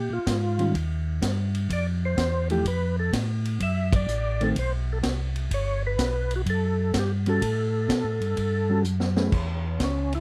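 The sound is dry and intimate, with close, detailed microphones placing the organs and drums up front in a short cut from a longer soul jazz organ trio piece. A gritty, overdriven tonewheel organ carries the greasy, soulful melody, its percussive second-harmonic attack colored by chorus vibrato and a slow rotary speaker. Beneath it, a second tonewheel organ plays the bass line in a round, mellow voice with audible key click, also through a slow rotary speaker. A vintage acoustic drum kit enters at 0.3 seconds with a punchy kick, a high-tuned snare and dark cymbals, swinging the eighth notes. A clean, fingered hollow-body electric guitar adds dark accompaniment chords as the harmony moves through a minor seventh, a diminished passing chord and rich ninth and thirteenth colors. The band hits an accent together at 3.8 seconds, and a drum fill at 8.9 seconds closes the passage.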